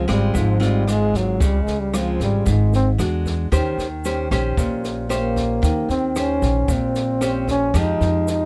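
Bossa nova at 114 BPM with a relaxed, romantic mood, this short cut from a longer piece features a mellow, close-miked trombone soloing with light vibrato up front over fingerpicked nylon-string guitar with fresh strings and audible finger squeak, woody pizzicato upright bass, a compact cocktail kit with a high-tuned snare, tight kick and rim clicks, and a grainy tube shaker in the background, all captured with close, detailed microphones and little reverb as the chords move from Dbmaj7 through E9 and Eb6 to Fm9.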